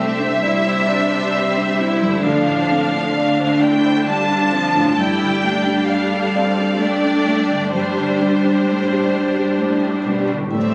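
Moving and uplifting, this rubato cinematic orchestral cue in C major at 66 BPM in 3/4 sets a lush, vibrato-rich violin melody over a second violin line in the background, an intense, close viola accompaniment up front, a mellow felt-muted upright piano with audible action noise, very quiet ringing harp arpeggios and smooth cellos on the bass, all played throughout a scoring-stage reverb and captured on a phone in the room as a short cut from a longer piece.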